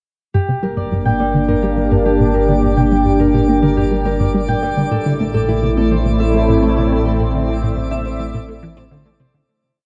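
This short, complete piece of ambient, sequencer-driven space music opens at 0.3 s with a sweeping resonant pad, a Celtic harp, a resonant blip pluck and a round analog bass all sounding together. The mood is mysterious and expansive at 105 BPM in a straight 4/4, centred on G dorian with chords moving from Gm to Am at 4.9 s. Up front, the bright, detuned pad holds slowly shifting chords with a filter swell and chorus, while the thumb-plucked harp rings out a 12-step arpeggiated loop that drifts against the bar through tape echo. Beneath them, the juicy, squelchy pluck repeats a 16-step sequence with a moving notch, phaser and tape echo, and a filter sweep runs across it, as the deep analog bass sustains its root notes with tube saturation. From 1.1 s, a twinkling granular texture fades in on a single held high note with an octave-up shimmer, sitting faintly behind the other parts. The dark production is bathed in a huge, wet reverb, and the piece fades out from 6.4 s to 9.5 s.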